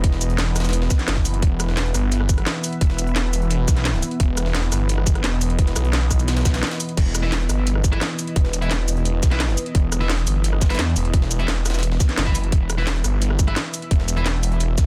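A dense, heavily limited modern master with little reverb gives this dark, tense stretch of technical drum and bass a dry, pressing weight, running at 173 BPM in a straight 4/4 in E harmonic minor. A tight electronic kick sits up front, layered with a produced drum kit of cracking snare, metallic hats, rim clicks, cabasa and crash, while a pitched-up, gritty, tape-toned breakbeat kit with a high-tuned snare lurks very quietly beneath. The snarling saw bass is the centrepiece: growling, detuned and distorted with overdrive, its moving notch adding motion under sidechain pumping. Behind it, a deep, moody analog pad holds sustained chords with a slow attack, chorus and its own sidechain pumping. After a short break at 6.6 seconds, a sludgy, double-tracked overdriven guitar enters at 7.2 seconds with picked stabs trailed by dub echo, staying in the background until 14.3 seconds.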